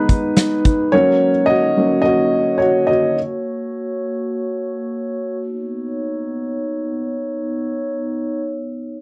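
This short clip of piano-driven pop in B major opens on a warm, woody upright piano, its audible action noise giving it an intimate, close-up feel, alongside sustained glass harmonica chords that sound glassy, pure and ethereal. A huge arena drum kit with a punchy kick, medium-tuned snare and hi-hat bursts in up front for less than a second, ending by 0.8 seconds, its natural, big-room acoustic sound filling the space. The mood is uplifting, moving at 107 BPM in a straight 4/4, with harmony shifting from G#m to F# before settling on Badd9. The piano drops out at 3.2 seconds, leaving the glass harmonica's slow-attack, smooth tones to carry on alone until 8.4 seconds. The sound suggests a dry, close 1970s-style studio recording touched with light reverb, and the clip is cut from a longer piece.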